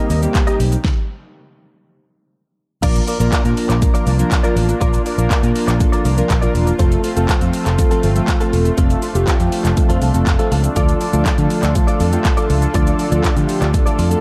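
Dance-pop with a bittersweet yet confident mood, cut from a longer piece, opens with a brief stop from 0.8 to 2.8 seconds before settling into a straight groove over Cm7, Bb, F and Dm. A punchy, up-front electronic drum kit with a fat snare, metallic hats, claps and shaker plays alongside a round, foam-muted vintage fingered bass, while a glossy, warbling retro polysynth and a smooth, detuned supersaw in the background both pump with sidechain. A twangy, clean direct-recorded guitar riff with ensemble chorus and a very quiet, grainy egg shaker sit on top of a dark, dry production.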